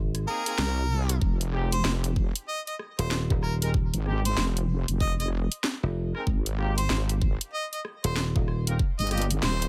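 Gritty and swaggering, this glitch hop excerpt pairs a heavy, chorused wobble bass and a punchy, foam-muted slap bass with an overdriven, knocking electronic kick arriving at 1.2 seconds, a cracking drum and bass kit with bright hats, a clear jazz-style harmonica solo with scooped notes and tape echo, and distant horn stabs pumping under sidechain, the mix kept dry with the basses and drums up front over a swung groove.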